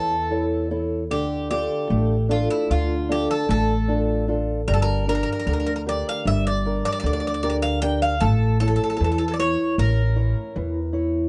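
The bright, metallic Greek bouzouki carries the melody up front, its double strings ringing with some octave doubling, over a boxy, woody fingerpicked old ladder-braced acoustic guitar and a pizzicato upright bass with steel strings. This reflective, wistful Greek folk excerpt moves in 9/8 at 152 BPM in D harmonic minor, speeding up across its 11.3 seconds as the harmony passes from A through Dm and Gm back to A. A moderate small-room reverb and a dark, warm production give the trio an intimate feel.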